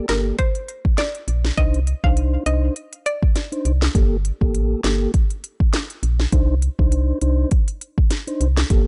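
Dancehall with a tough, hypnotic mood, cut from a longer piece and riding a swung sixteenth-note feel. An electronic afro-pop drum kit sits up front from 0.1 seconds, with a deep kick, sharp snare, crisp hi-hats and handclaps driving the groove. Beneath it, a woody FM bass holds the low end with round, dark notes that strike quickly and then decay. A soft, flute-like tonewheel organ supplies clean chords through a fast rotary speaker, cycling between Gmadd9 and Cmadd9 for the full length. Over the top, a mallet-like synth pluck with a percussive edge and a layer of noise carries a brief melody from 0.1 to 3.2 seconds, coloured by chorus and tape echo. The mix is dry and close, with a dusky, rolled-off top end.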